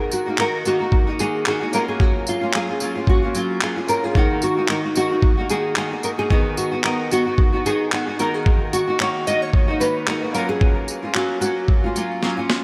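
Acoustic pop with a heartfelt, carefree mood and a light 16th-note swing, this short cut from a longer piece sets a fingerpicked nylon-string guitar melody up front, colored by ensemble chorus and a diffuse ambient delay, over a second double-tracked, full-bodied nylon-string guitar accompaniment where finger squeak can be heard. A very quiet, woody upright piano with long sustain fills in beneath, while a gritty, compressed sampler-style breakbeat kit of thumpy kick, snare, handclaps and tambourine sits up front and closes with a fill at 12.2 seconds. Chords move between D#m, F#maj7 and B/D#, and the whole mix is soaked in a huge, dreamy reverb.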